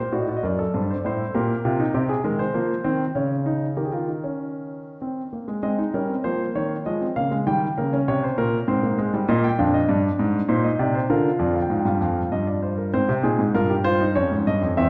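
A warm grand piano, placed up front, plays alone through this contemplative, serious classical passage: a baroque-style three-part fugue in 3/4 with a straight feel, spanning from E2 up to G5. The harmony moves through chords such as D7, Cm, Eb7, Ab and Bb7 across three sections, with changes at 5.6 and 12.9 seconds. A wet recital-hall reverb and a vantage from further back in the room give the sound its spacious, reflective quality in this short passage cut from a longer piece.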